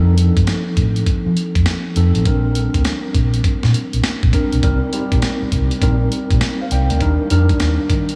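A mellow tine electric piano and a dark, round, foam-muted fingered bass open this short new jack swing cut together, with a breakbeat drum kit arriving at 0.2 seconds. The mood is confident and slick, carried by a loping sixteenth-note swing. Up front, the clean electric piano comps through its built-in speakers over chords moving from F7 to Bb69, then into Cm7 and Ebmaj7 when the second section begins at 4.6 seconds. The amped bass holds the low end, while the sampler-style drums bring a gritty, compressed, tape-warm character, with a thumpy kick, a medium-tuned snare and hi-hat, all re-recorded in a small room and placed up front. The whole mix is soaked in a moderate cathedral reverb, giving it a dreamy haze around its groove.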